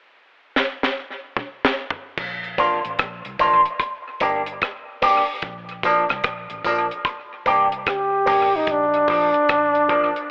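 A fill on the deep reggae drum kit opens this roots reggae excerpt at 0.6 seconds, its high-tuned snare, tight kick, toms, rim clicks, hi-hat and crash sitting dry and up front with touches of tape echo. At a relaxed 74 BPM in Bb major, with a swung sixteenth-note feel, the groove settles in as a dark, round, foam-muted electric bass arrives at 2.2 seconds, punchy but low in the mix, while the band moves between Bb and Gm. An electric guitar joins almost at once, its bright, twangy, compressed tone shaped by an envelope filter and dressed in lush chorus and tape echo, sitting prominently as accompaniment. Tambourine and woodblock tick along close and dry in the background. Near the end, from 7.9 seconds, a trombone steps forward as the soloing melody, warm and punchy with light vibrato and its own tape echo. The whole mix carries a narrow, telephone-like colour and a moderate spring reverb, giving this short, uplifting groove a warm mood.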